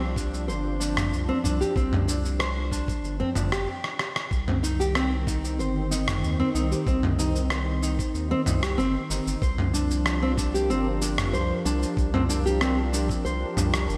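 A fingerpicked nylon-string guitar, up front with fresh-string squeak and a gritty 12-bit sampler edge trailed by tape echo, spins hypnotic arpeggios over a warbling, detuned analog pad and a deep, round bass that both pump against a thumpy sampled kick and a dusty, up-front soul kit of cabasa, rim click and toms, with a very quiet udu heard only from 1.4 to 3.3 s and a drum fill at 3.8 s leading into the Cm chord, all set in a lush, arena-sized hall in this meditative organic downtempo excerpt.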